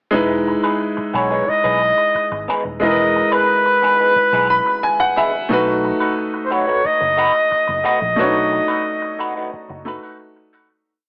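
The whole piece sounds as if heard over an AM radio, with a moderate plate reverb around it. It is a short, smooth and romantic soul verse in straight 4/4. A clear, up-front grand piano holds vintage drop2 chords with grace notes, and adds a short fill from 4.2 to 5.5 seconds. Beneath it, a foam-muted fingered electric bass sits low in the mix with a round, dark tone, playing a melodic line with ghost notes and chromatic approach notes. A slightly broken-up, compressed electric guitar through a small old amp and a wah pedal plays a soft, lo-fi sixteenth-note rhythm riff. A warm flugelhorn takes the lead from 1.2 seconds with scooped notes, light vibrato and song-like motifs, distant and roomy yet punchy, before the piece fades out from 8.2 seconds.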